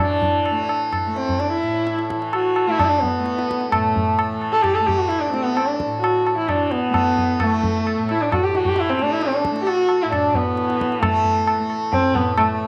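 A single bowed sarangi leads this brief Hindustani classical fragment in raga Bhimpalasi in A, its dark, woody voice gliding between notes with portamento and light vibrato while sympathetic strings ring beneath it. The mood is introspective and full of longing, with the melody sitting up front yet carrying a slightly distant quality and a slapback echo, moving within the range from A3 to A4. A softly plucked tanpura holds a bright, buzzing drone from A2 to A3 underneath, shimmering steadily throughout at a tuning of A4 = 439 Hz. From 0.2 seconds, a high-tuned tabla with a short ring adds close, dry percussion in a straight 4/4 feel around 131 BPM. The tempo gradually speeds up across the 12.7 seconds, and the whole passage sits in a moderate echo-chamber reverb with small room ambience, cut from a longer performance.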